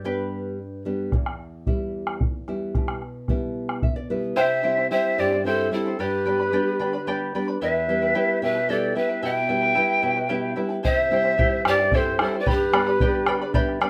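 In a straight 6/8 at 74 BPM, this earthy, melancholic Andean folk excerpt in E minor opens on a dark, woody nylon-string guitar and a shimmering, fingerpicked charango, with a deep, band-limited bombo sounding up front from 1.1 seconds. At 4.4 seconds a bright, reedy cane quena takes the melody, its vibrato and crisp chiff shadowed by a breathy, unsteady pan flute on a second line, while the guitar adds short fills and the chords move through C, G and E minor. A moderate studio ambience surrounds the ensemble, and the passage is cut from a longer piece.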